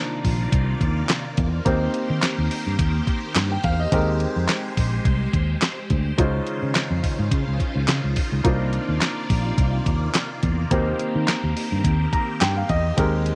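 Danceable and slick, this early-eighties boogie funk excerpt moves at 106 BPM with a swung sixteenth feel, as a punchy, amped fingered electric bass and a clean 12-bit digital drum machine with a thumpy kick, fat snare, handclaps and hi-hat sit up front alongside polished grand piano accompaniment and a swirling, bright string machine holding sustained chords through chorus and phaser, over a lightly reverberant progression from Cm11 through Eb6, Abmaj9 and Dbmaj9, with a piano fill at 11.8 seconds.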